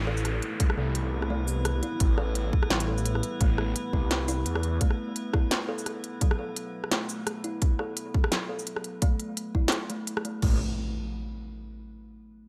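Dark and tense, this half-time drum and bass excerpt moves at 171 BPM in A minor with a lightly swung sixteenth feel. A hard-clipped electronic kick sits up front beside an industrial kit of clanging snare, smooth hats, rim clicks, shaker and crash, its tape-warm tone set in studio ambience. A thick, swirling detuned saw bass carries a phaser over the opening Am chord before dropping out at 4.8 seconds, returning briefly at 10.4 seconds. Above it, a woody, mellow kalimba plays band-limited arpeggios through tape echo while a filter sweep moves across it. An eerie, inharmonic metallic drone with chorus and its own reverb hangs behind, and a very quiet, moody analog pad holds sustained chords underneath. Downlifter and impact effects sound at the opening and again from 10.4 seconds on the closing A5 chord, all within light digital reverb.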